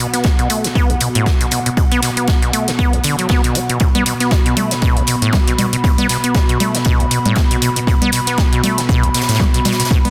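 A brooding, detuned analog pad with chorus and gritty sampler texture opens alongside a squelchy, resonant sawtooth acid bass riff that is tube-saturated and fed through digital delay, both pumping against the sidechain, as overdriven electronic hi-hats and congas arrive at 0.1 seconds together with a big-room acoustic kit whose fat snare and filtered hats sit in the background, followed by a punchy, up-front electronic kick in this raw, hypnotic acid house excerpt with a swung sixteenth-note feel and a dense, heavily limited master.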